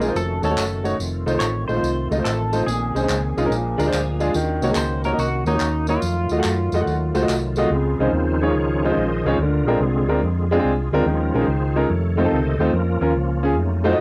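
A swung 4/4 feel drives this soulful, solemn uptempo gospel excerpt. A round, punchy hollow-body bass and a clear, up-front baby grand piano carry it throughout. A reedy tonewheel organ with slow rotary and chorus vibrato holds sustained chords before taking a solo at 7.7 seconds. Over the first half, a dark, twangy guitar colored by analog chorus and plate reverb sings the melody, with tambourine and saturated group handclaps behind it. A picked second guitar, touched by cassette-tape grain and plate reverb, slips in softly at 3.8 seconds.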